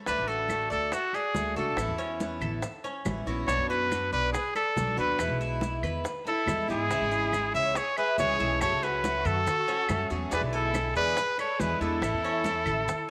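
Set in a moderate echo-chamber reverb, this sunny Cuban son and guajira excerpt puts a clear, vibrato-rich trumpet with slapback echo up front over a bright picked steel-string acoustic guitar, a metallic double-strung tres playing arpeggios, a dark, thumpy pizzicato upright bass, and background bongos, congas, grainy maracas and very quiet woody claves, with a focused, bowed violin section adding a second line from 6.3 s.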